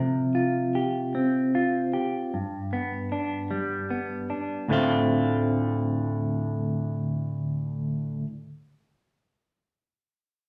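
Cinematic and brooding, this short rock excerpt moves at a slow 76 BPM in 3/4 with a straight feel, centered on D minor. A semi-hollow electric guitar plays fingered arpeggios from 0.0 to 8.3 seconds, ranging from D2 up to G4. Its tone is clean and dark with a hollow-body character, sitting up front and colored by harmonic tremolo. The harmony moves from Csus4 to G, then settles on Dm7 at 4.7 seconds as the passage shifts into a new section. A wet large-studio reverb surrounds the guitar, giving the sense of a band playing live together in one room.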